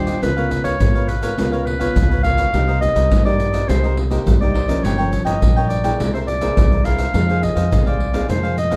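Samba and choro at 104 BPM in a straight 4/4, joyful and sunny, this short cut from a longer piece features a roomy, distant clarinet carrying the classical-style solo melody over crisp picked cavaquinho, dark fingerpicked nylon-string guitar, woody, thumpy pizzicato upright bass on gut strings, and up-front percussion of egg shaker, deep surdo and pandeiro entering at 0.1 seconds, all set in moderate studio reverb with a dark, warm production as the chords move from Db6 through Cm7, Gm7b5 and C7b13 to Fm7.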